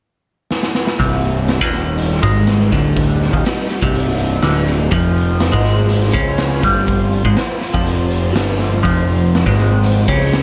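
Psychedelic rock in C minor at 122 BPM, this hypnotic, mysterious excerpt opens with a drum fill on a raw garage kit, gritty and saturated with a punchy kick and tape echo, before a bright, twangy twelve-string electric guitar riff through phaser and a fuzzed, overdriven picked bass arrive at 1.0 seconds. A very quiet, jingly tambourine joins at 1.2 seconds, and from 1.7 seconds a lush vintage string machine holds sustained sawtooth chords with ensemble chorus in the background, moving from Cm to F5. The echo-heavy mix sits in light small-room reverb, with the guitar and drums up front.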